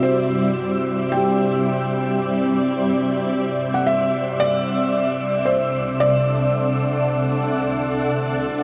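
This short ambient passage, cut from a longer piece, opens with every part sounding at once. A felt-muted upright piano carries a soft, intimate melody between C5 and G5, laid over a granular cloud pad holding sustained chords up front. The mood is luminous and serene, moving at a slow 56 BPM in straight 4/4 over a single Dadd9 chord, with the tuning set at A4 = 441 Hz. The pad is cloudy and blurred, its detuned sine grains evolving through slow attacks and long releases inside its own reverb. Beneath it, an analog drone warbles with vintage, wave-folded tones thickened by chorus, while muted felt-like synth keys play dark, decaying arpeggios in the background through chorus and tape echo. The piano also passes through tape echo, and a wet shimmer reverb with a 7.6 second tail hangs over the whole 8.6 seconds.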